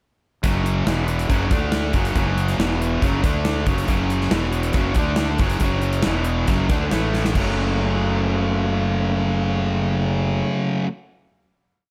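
A dry recording carries this short, driving and gritty classic rock piece, built on a power-chord riff from two picked electric guitars, one crunchy and warm with overdrive and the other tight, bright and distorted up front. A growly, fuzzed-out fingered bass sits prominently, driving eighth notes that double the guitar riff. A punchy, polished gated 80s kit with bright cymbals plays a pop groove, rolls a fill at 7.1 seconds and stops at 7.5 seconds. The guitars and bass then sustain a final F# minor chord, the bass dropping out at 10.4 seconds and the guitars ringing on until 10.9 seconds.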